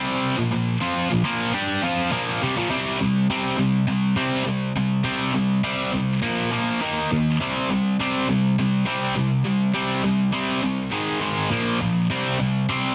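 A high-gain distorted electric guitar, bright, picked and double-tracked, sits up front alone in this aggressive, driving rock excerpt in C minor at 102 BPM, moving through power chords on Bb, C, Eb and Ab with light reverb and a dense, heavily limited modern master, shifting into a new section at 2.7 seconds before the cut at 12.9 seconds.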